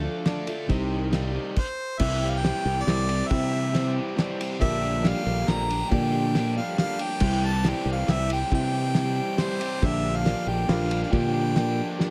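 Opening on a picked, dark parlour-style acoustic guitar, reedy electric piano, a piping organ with key click and slow rotary swirl, and a double-tracked overdriven electric guitar riff over a growly, up-front fingered bass, this dusty, reflective folk and heartland rock excerpt at 138 BPM in 3/4 brings in a cloth-damped, thuddy drum kit with a fat snare and dark cymbals at 0.3 seconds, then a clear, up-front harmonica melody at 1.6 seconds as a brief stop begins, moving from Dm and Cm into C and Gm7/Bb in light reverb.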